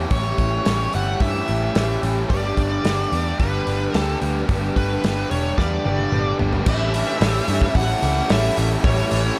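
A smooth, overdriven lead guitar carries the melody through analog delay over a hazy, wistful shoegaze and dream pop groove at 110 BPM in a straight 4/4, moving from A7 to Gadd9 before returning to A7 at 6.7 seconds. Beneath it, three picked guitar riffs blend: a bright, double-tracked distorted part and a subtly chorused overdriven part sit in the background, while a dark, lo-fi, compressed guitar through a small old amp trails reverse reverb. A round, foam-muted vintage bass sits up front, and a loose indie drum kit with a tight kick and a rolled-off top plays a fill from 5.6 seconds, all in a light reverb.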